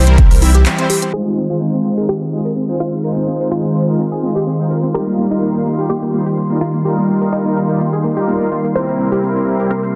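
Progressive house cut from a longer piece, emotional and driving, where a lush, warbling pad and a smooth supersaw with dub-echoed stabs pump under sidechain up front, punchy detuned plucks in the background play arpeggios from the start and add a dub-echoed melody from 1.1 s, a fat, thick analog bass sounds only until 0.7 s before a short break, overdriven congas flicker far back, a deep house kit with smooth filtered hats carries handclaps, shaker and crash, a twinkling granular shimmer enters at 2.9 s, and a filter sweep runs through the plucks from 1.1 s over a hall-reverb, heavily limited mix.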